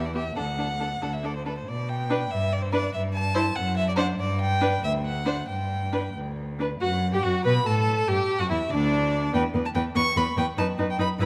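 A single bowed violin carries the melody up front, its warm, vibrato-touched tone smooth and even as it rises as high as C#6 in this spirited, cheerful quick classical-period movement for string quartet. Beneath it, a rich, up-front cello anchors the bass in a low register, while a second violin adds a smooth counter-line that sits noticeably distant in the blend. The viola enters at 0.1 s with a soft-edged, vibrato accompaniment in the middle of the texture. The music moves in 6/8 at roughly 89-98 dotted-quarter beats per minute with a flexible, rubato feel, tuned slightly low at A4 = 436 Hz. The first section leans on bright D and G major harmony in G major, and at 6.8 s the second section shifts toward darker minor colors before settling onto B. A moderate concert hall reverb with a 2.5-second decay surrounds this short passage cut from a longer piece.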